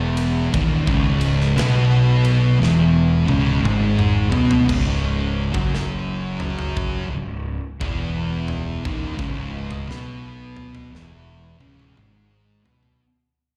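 Ominous and hypnotic, this stoner and doom metal excerpt crawls at 58 BPM in C# minor with a swung feel, as two thick fuzz guitars with slapback echo grind out a riff, one up front and one in the background, over a growly, overdriven fingered bass and a big acoustic rock kit with a punchy kick and medium-tuned snare that enters at 0.2 seconds and plays fills at 2.6 and 10.9 seconds, all heard like a live gig through a venue's PA in a small, reverberant room before fading out from 4.7 seconds.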